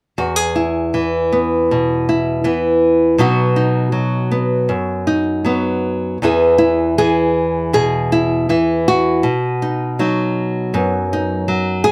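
Folk instrumental for solo fingerstyle acoustic guitar, pastoral and peaceful, moving at 80 BPM in 4/4 with a loose, rubato feel in E major. A single nylon-string guitar carries the whole short piece from 0.2 to 11.9 seconds, fingerpicked and ranging from E2 up to G#4. Its tone is small, warm and up front, with finger squeak audible on the strings. The harmony rocks gently between E and B, and a second section beginning at 6.2 seconds returns to the same pair of chords. A moderate studio reverb gives the guitar a modest sense of room around its close sound, and the recording is cut from a longer piece.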